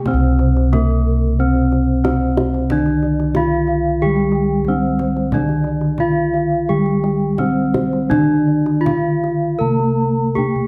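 This Javanese gamelan passage, cut from a longer piece, has a shimmering, ceremonial mood over uneven beats. A close, dry bronze metallophone struck with a wooden mallet carries the melody up front, and a second metallophone with padded disc mallets plays a mellow accompaniment whose paired tuning creates shimmering beats. A softer, boxy-sounding third metallophone plays high arpeggios, while round, padded bossed gongs hold the bass, the kendang enters at 0.1 seconds with tight, soft hands, and a moderate hall reverb wraps the dark production.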